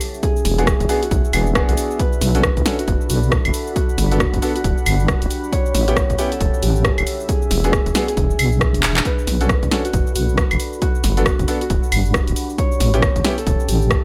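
A bouncy, late-night groove in UK garage's two-step style, with a swing on the sixteenths and a loop of seventh chords moving from E7 through Bm7 and Gmaj7 to A7. A mellow, thumb-plucked Celtic harp carries the melody from the start, its ringing notes trailed by digital delay, while a deep, moody pad sits in the background with chorus, slow attack and long release, pumping against the kick. The house kit plays up front with a punchy snare, claves, handclaps, rim clicks, shaker and warm hats, joined at 0.2 seconds by a punchy, tape-warm electronic kick, both dressed in studio reverb. A deep wobbling bass enters at 0.5 seconds, detuned and chorused, loud in the mix and pumping, and a brilliant vintage grand piano drops in short stabs with long sustain from 0.6 seconds. A drum fill lands at 8.8 seconds, and the whole passage is cut from a longer piece.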